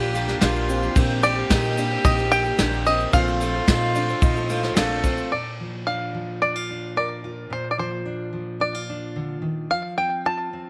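Hopeful and uplifting, this 110 BPM indie folk excerpt in Bb major sets a twangy, up-front bluegrass banjo melody with slapback echo over a reedy bowed cello line, shimmering twelve-string guitar, a mellow upright piano's arpeggios, a woody pizzicato upright bass, a soft brush drum kit and a grainy tube shaker in the background, before the cello, twelve-string guitar, piano, bass, drums and shaker stop at about 5.3 seconds and a full-bodied fingerpicked steel-string guitar with audible finger squeak enters beneath the banjo in a fairly dry room.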